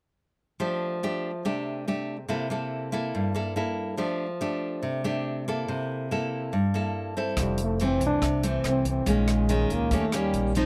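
Bossa nova with a romantic, breezy mood, cut from a longer piece, opens with a bright, full-bodied nylon-string guitar fingerpicked up front, its finger squeaks caught by close, detailed microphones in a dry room. At 7.4 seconds a mellow trombone takes the melody with light vibrato, joined by a woody, growly pizzicato upright bass and a compact cocktail drum kit with a punchy kick, hi-hat and rim click, as the harmony shifts from F69 and C6 toward Fmaj7, Bbm7 and Eb7.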